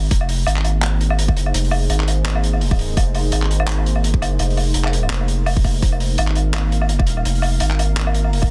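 A dense, heavily limited master with small-room ambience frames this dark, spacious half-time drum and bass passage, cut from a longer piece and holding on a single chord throughout. A tight, layered electronic kick sits up front beside a gritty, saturated breakbeat kit with a rolled-off top, its handclaps, hi-hat and woodblock swung lightly and its snare softly clipped. A thick, sine-based sub bass anchors the low end from 0.0 seconds, while a moody, detuned analog pad with chorus sustains slow-attack chords that pump against the sidechain.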